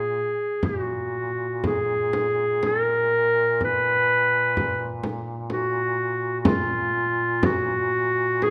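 Mournful and full of longing, this fragment of a Caucasian folk lament drifts in a rubato triple metre, led by a warm, vintage-toned clarinet singing the melody in a classical style, up front. Beneath it a mellow duduk holds a low drone with vibrato, soft attacks, scooped notes and a smooth top, while a deep, large frame drum, close and dry, enters at 0.6 s. A moderate recital-hall reverb gives the whole a sense of space.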